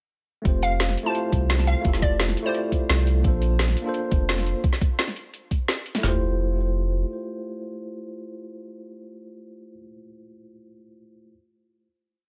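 Two overdriven garage drum kits sit up front in this short, uplifting liquid drum and bass piece: one plays a two-step pattern with a knocking kick and toms, and the other rolls out woody snares and metallic hats. A round, deep sub bass holds long gliding notes beneath a worn, slightly out-of-tune tine electric piano, which plays held chords with syncopated pushes through digital delay. Between 0.6 and 2.8 seconds a hollow, bouncy square pluck adds short phrases coloured by lush chorus and cassette tape. The drums stop around 6 seconds and the bass around 7 seconds, and the electric piano rings on a final chord until 11.3 seconds in a dry sound.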